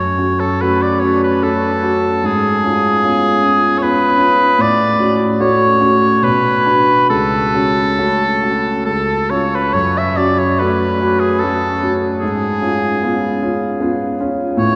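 A long, wet cathedral reverb surrounds this romantic classical duo, heard from further back in the room, while the oboe and grand piano each sit up front. In a solemn, yearning F# minor at a rubato 68-79 BPM in 3/4, the clear, present oboe sings a solo melody from G#4 to E5 over the smooth, vintage grand piano, whose long sustain fills out the low and middle register beneath it. Both instruments play throughout this 14.8-second fragment of a longer piece, moving from F#m through Bm and C# before settling back on F#m and ending on C#7/G#.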